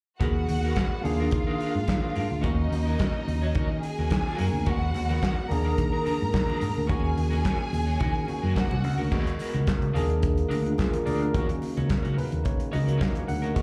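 Heard as a live club gig through the venue's PA, this short excerpt from a longer disco piece has a close, fairly dry sound with a touch of club reverb and a sultry, glamorous mood. At 108 BPM in a straight 4/4 and the key of Eb minor, a punchy, up-front fingered electric bass and a dark, smooth soul drum kit with punchy kick, medium-tuned snare, hi-hat, handclaps and crash cymbal drive the groove from the start. A barky, lightly overdriven tine electric piano and a dark, slightly broken-up picked electric guitar with tremolo fill out the accompaniment, both carrying slapback echo, while a lush bowed string section with expressive vibrato sings the second line until 9.1 seconds. Very quiet, bright congas join at 4.9 seconds, and the harmony cycles through Abm9/Eb, Bb7/Eb and Ebm7. At 9.1 seconds the strings give way to a distant, roomy French horn section holding sustained chords in the background, and the electric piano takes a fill from 11.9 seconds to the end.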